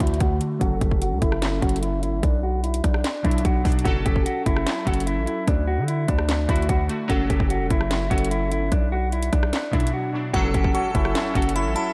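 A half-time trap groove at 148 BPM in 4/4 drives this brooding, menacing hip hop excerpt in F# phrygian, its electronic drum kit sitting up front with a hard-clipped kick, sharp snare, metallic hi-hats, handclaps and rim clicks. Beneath it, a punchy, heavy 808-style bass with a sine core and a noise layer hits with a fast attack and decays, while glassy, detuned digital keys carry the chords through chorus and a filter sweep over the first 3.9 seconds. A dark, clean, fingered electric guitar plays the compressed, mellow melody, low-passed and trailed by diffuse ambient delay. After a brief break, at 10.3 seconds a crystalline FM synth bell enters as a second line alongside shimmering pipe organ and strings celeste in soft, romantic voicings, with a very quiet, vintage brass ensemble stab and a faint electronic impact closing the passage. The whole mix is dreamy and soaked in a lush hall reverb, cycling through D, F#m and Bm.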